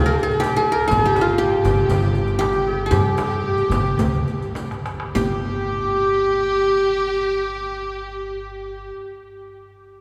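Arabic maqam ensemble in G maqam bayati, hypnotic and longing at 99-124 BPM, where an up-front qanun, bright-edged with fingerpicks, leads over a clear, smooth clarinet, a rich, biting bowed chamber violin section and a woody, thumpy pizzicato upright bass, while background riq with dark jingles, clay-shelled darbuka and a very quiet frame drum play until 5.4 s, the tempo slowing from 0.9 s into a drum fill at 4.6 s, all bathed in a cathedral reverb in this short cut from a longer piece.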